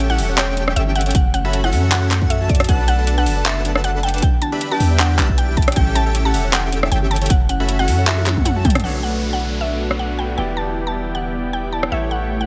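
This dreamy, emotional slice of future bass opens in the middle of a drop. A woody, mallet-like synth pluck carries the melody over a breathy pad, a huge detuned supersaw riff and a deep, sine-toned 808-style bass, all breathing with sidechain pumping at 156 BPM in a half-time feel with a light 16th-note swing in E dorian. Airy, vibrato-tinged lead arpeggios and a soft, dark pluck arpeggio sit in the background, both trailing dub echoes like the main pluck. A punchy, up-front electronic kick and a layered pop kit with metallic hats, handclaps, rim clicks, toms and crash drive the groove, with the kit's snare, hats, toms and cymbals low-pass filtered. A drum fill from 8.1 seconds and a band accent at 8.7 seconds lead into a new section at 8.8 seconds. There the arpeggios and kick stop, a bright, intimate grand piano with audible action noise enters in the background, a downlifter falls away, and the supersaw sweeps through its filter over a light reverb. 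The chords cycle through A7, F#m7, Bm7 and Em7.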